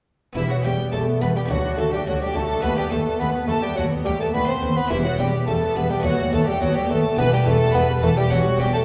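A brief passage cut from a longer baroque-style concerto movement opens with a hushed, lute-like harpsichord, its buff stop giving a muted, dry pluck far beneath the ensemble, as a rich violin section enters alongside it with a smooth, even second line. A mellow bassoon carries the melody up front with light vibrato, joined in the high register by another violin section whose soft attack and intimate closeness lend it a tender edge, while a lush viola section sits in the background. Underneath, a distant cello section and an expressive double bass section anchor the low end with bowed vibrato. The mood is dramatic and driving in a straight 4/4, moving between minor and dominant chords, and everything is heard from further back in a recital hall whose reverb trails for 1.8 seconds.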